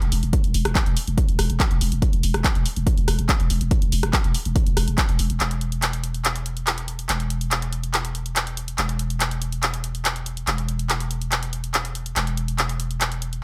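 Driving peak-time techno in a straight 4/4, relentless and dark, cut from a longer piece and tuned slightly below standard pitch. A growling, buzzy 808-style bass sits up front from start to finish, its sine tone shaped by a fast attack and a decaying tail, pushed through overdrive and a low-pass filter and pumping against the sidechain. A layered, produced techno kit of handclaps, hi-hat and rim click runs throughout, close and forward, with the hats breathing under their own sidechain pumping and the kit carrying the air of a large room it was re-recorded in. A heavy electronic kick, also layered and re-recorded in a large room, drives the opening stretch from 0.3 to 5.1 seconds and stands as the loudest element. Once it drops out, the second section from 5.4 seconds leaves bass and kit to carry the dry mix with little reverb.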